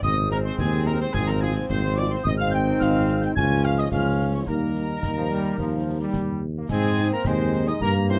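In a straight 2/4 at 108 BPM, this festive, proud military-style march for wind band moves in Ab major, heard as a short cut from a longer piece. A bright, tight trumpet section carries the melody with light vibrato and a soft attack, heard close and present, while a pure, expressive piccolo floats a second line above it from a distance. Beneath them, a clear, punchy trombone section holds sustained chords with a smooth top, and a mellow French horn section fills in the accompaniment from 0.3 seconds. The dark tuba sits up front as the strongest voice, anchoring the bass, and the concert bass drum, snare drum and clash cymbals with their darker cymbal colour stay close and dry in the background. At 6.7 seconds the harmony returns home to Ab as a roomy euphonium joins with a distant second line, all set in a modest booth ambience.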